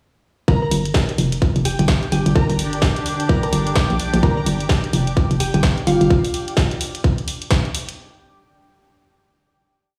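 At 0.5 s a swaggering, bouncy bass house drop in G minor at 128 BPM with swung 16ths kicks in with a tight, up-front four-on-the-floor electronic kick, a hollow, knocking FM bass in chopped, sidechain-pumped phrases and a round, tine-like thumb-piano-style synth pluck coloured by chorus, cassette tape and digital delay, soon joined by a garage kit's cracking snare and programmed hats and, from 1.3 s, a cloudy, evolving granular pad with built-in reverb, all set in light reverb as if played through a big sound system in a bare room, until the melodic parts stop at 6.1 s and the drums carry on alone.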